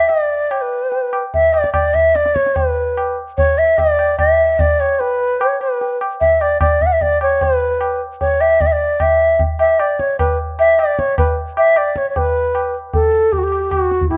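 An airy, reedy bansuri sits up front with vibrato, a crisp attack and rolled-off highs, carrying the melody between E4 and F#5 in a plate reverb, while a low-tuned tabla with a short ring sounds close and dry beneath it from 0.1 seconds. This serene, meditative Hindustani classical excerpt moves in 3/4 at about 150 BPM and gradually speeds up throughout, set in a small room. After a contrasting middle passage, the opening idea returns at 12.2 seconds before the cut at 14.2 seconds.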